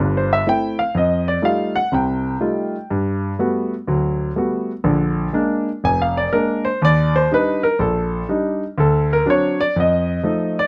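A swung eighth-note feel at 123 BPM in 4/4 drives this short solo jazz passage in G minor, cut from a longer piece. A grand piano carries everything alone across the full 10.7 seconds, ranging from F1 up to Ab5, with a warm, present tone, short sustain and an up-front placement. The harmony moves through C6, F9, Gmaj9, Bb7, Ebmaj7 and D7, before closing the passage on F7 at 9.7 seconds. Close, detailed microphones capture the instrument, with light reverb adding a touch of space. The mood is sophisticated and warm.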